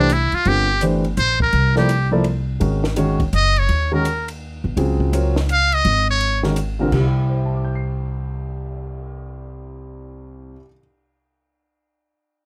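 Closely miked and nearly dry, this brief cut from a longer modal jazz piece has a searching, hypnotic mood in a swinging three-four. A buzzy, metal-muted trumpet with light vibrato carries the solo melody up front until 6.4 seconds, over an intimate grand piano with long sustain and audible action noise, a woody, thumpy pizzicato upright bass, and a dark, smooth cocktail drum kit sitting low in the mix with a high-tuned snare, punchy kick, ride, hi-hat, crash and cymbal swells. The harmony moves from C9sus4 to Ab9sus4 before settling on C, and the piano is heard alone for its final moments until 10.8 seconds.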